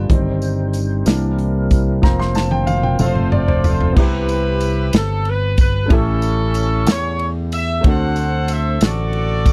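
A slow 6/8 pulse anchors this soulful, hopeful gospel excerpt, carried by an up-front acoustic drum kit with a punchy kick, medium-tuned snare, hi-hat, ride, crash and toms in an airy, polished studio room, along with a jingly, bright tambourine sitting low in the mix. The fingered electric bass also sits forward, direct and amped, while a warm baby grand piano with natural, short-sustained tone plays accompaniment throughout and takes a solo feature across the opening. A fat, lightly overdriven tonewheel organ holds sustained chords through a slow rotary speaker, with chorus vibrato and audible key click, until it drops out at 4.0 seconds as the harmony settles into a major key. A drum fill from 2.0 seconds leads into that shift, and a mellow horn section with light vibrato enters at 3.0 seconds to carry the melody, sounding distant and roomy against the dry, close 1970s-style recording.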